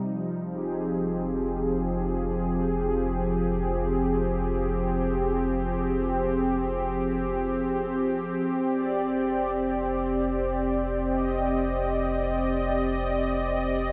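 Floating in free time, this ambient fragment of a longer piece settles into a spacious, melancholic mood in F dorian, tuned to A4 = 442 Hz. An analog pad sits up front for all 13.9 seconds, holding sustained chords whose detuned sawtooth tone is smooth and warm, with a soft attack, a long release and a chorus. Beneath it, a round analog bass holds a deep F1 throughout, its triangle and sine character dark and coloured by tube saturation, and it sits well below the pad in the balance. The harmony rests on Fm9 before shifting to Cm/F at 8.4 seconds. A huge, wet reverb with an 8.5-second decay surrounds the sound, giving the whole passage a vast, suspended sense of space.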